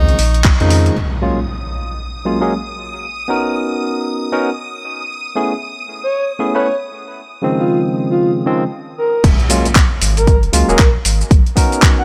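Deep house with a warm, hypnotic pull and a swung sixteenth-note feel, cut from a longer piece. A bright tenor saxophone with light vibrato and scooped notes flashes a single jazz-style phrase through dub echo at the very start, while an up-front, barky tine electric piano plays stabs throughout, pumping against the sidechain and darkened by a low-pass filter and dub echo. A round sine sub bass and a gritty, overdriven sampler-style kit of crash, handclaps, hi-hat and shaker open the track briefly with a deep layered electronic kick, then fall away. Through the middle, shimmering vintage string-machine violins hold high sustained notes in ensemble chorus, electronic impacts sound from 1.0 s, and a breathy, warbling flute-like synth lead enters at 6.0 s with chorus and delay over lush ninth and eleventh chords. At 9.2 s the drop brings the kick, drums and sub bass back in for a full groove in light reverb.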